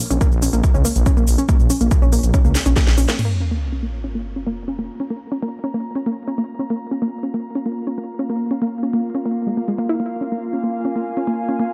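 Driving peak-time techno with a hypnotic, industrial mood: a punchy analog kick and an overdriven, layered kit with cracking snare, smooth pumping hats, shaker and crash drive the opening alongside a thick, beating detuned saw bass, before a drum fill leads to the drop at 3.2 seconds. There, a sub drop lands as an impact and the groove falls away, while the dusty, nasal pluck riff, chorused and delayed with a lo-fi warble, carries on beneath it. A nostalgic, tape-like pad with a slow attack joins it at 4.0 seconds, mellow and softly pumping in a digital ambience.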